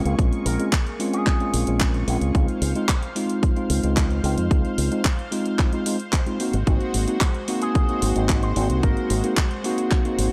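A punchy, up-front electronic kick anchors a straight groove alongside handclaps and hi-hat from a tape-warm house kit re-recorded in a large room, while a fingered electric bass with an envelope filter drives the low end with sidechain pumping. This cosmic, sleek nu-disco excerpt moves through Bbm7, Dbmaj7 and Ab7, with a mellow tine electric piano heard through its built-in speakers and a lush, detuned sawtooth-and-square unison pad with chorus and a slow attack, both breathing under the same pumping. A bright, twangy picked guitar with an envelope filter, spring reverb and analog delay adds brief melodic phrases at 0.5 s and again at 7.6 s, all set in a dry, gritty digital ambience.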